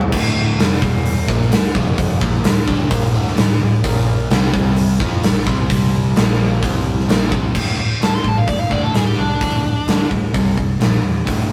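Hard rock in D minor at 129 BPM, this aggressive, heavy excerpt drives a double-tracked, overdriven semi-hollow guitar riff over a growly, bright picked bass and a huge arena drum kit with a punchy kick, medium-tuned snare, crashes, hi-hat and toms sitting up front. The chords move from Dm through Bb5 and C5 power chords before settling on D5 as a new section begins at 7.5 seconds. There, a nasal, up-front lead guitar with a parked wah cuts in from 8.0 to 10.1 seconds, all captured as a rough rehearsal-room recording with light reverb.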